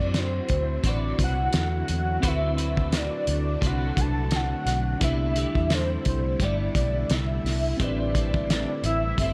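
A soft, octave-layered synth lead with a round, sub-octave body carries the melody over a D13 to Cmaj7 change in C lydian, dressed in phaser, ensemble chorus and digital delay, while a worn, slightly out-of-tune tine electric piano with a cassette-tape tint, a chorused twelve-string electric guitar with warbly pitch drift, and slow-attack string-machine violas sit in the background. A dark, foam-muted fingered electric bass sits up front, and at 0.1 s a cloth-damped, thuddy drum kit enters with a fat snare, tight kick and hi-hat, its sound muffled, gritty and rolled-off. This is a nostalgic, laid-back indie and bedroom pop excerpt at 86 BPM in 4/4 with a light sixteenth-note swing, set in a small room.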